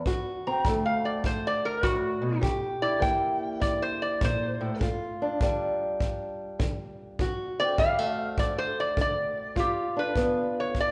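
A swung 4/4 groove at 101 BPM carries this laid-back, soulful excerpt of acoustic country blues, with a dark, boxy fingerpicked old ladder-braced acoustic guitar and a punchy kick drum played with brushes sitting up front under chords moving from D7 through C7, G5 and back to D7 before a G7 at 9.6 seconds. From 0.5 seconds a metal-body resonator slide guitar takes the melody, its mellow, nasal, metallic tone picked with fingerpicks and played with a steel bar. A reverberant recital hall ambience surrounds the trio, with a new section arriving at 9.6 seconds.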